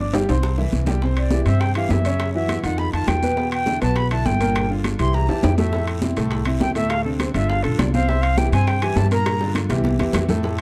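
Lively and danceable, this Afro-Cuban jazz excerpt sets an airy, vibrato-laden silver flute solo from 1.2 to 9.5 seconds over a clear, vintage grand piano and a woody, growly pizzicato upright bass up front, while bright high-tuned congas and tight bongos sit in the background beside ringing metal-shell timbales and a raspy guiro, in a dark production with light reverb.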